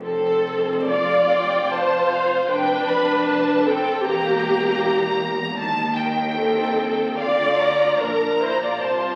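A tender, slow romantic movement for string orchestra in F major opens with an up-front, soft-attacked viola section carrying the accompaniment over a warm second line from the violins, while a clear but distant cello section and a focused double bass section hold the bass with vibrato. At 0.9 seconds a lush, smooth violin section takes the melody high above, moving in a rubato 4/4 at 66-80 BPM through F, Edim, Am7b5/Eb and Bb/D. The strings sit in a reverberant scoring-stage space, heard through the crackle of a very old 78 rpm record, in a short warm passage cut from a longer piece.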